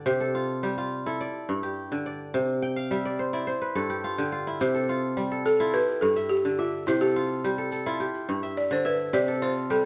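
A live band shares a large studio, and a moderate reverb gives the room a gentle, open bloom around this joyful, warm West African string and xylophone music, cut from a longer piece. In C major at 106 BPM in a straight 4/4, a mellow, ringing kora sits up front, its fingerpicked arpeggios spanning G2 to G5 as the harmony alternates between C and G5 throughout. The kora adds a fill from 2.6 seconds, and at 4.6 seconds a grainy, bright tube shaker slips in softly beneath it. From 5.5 seconds a close-miked balafon, struck with rubber mallets, takes the melody between E4 and D5 in a solo. Its woody, buzzing tone is full and dry, standing out clearly against the kora's crisp strings.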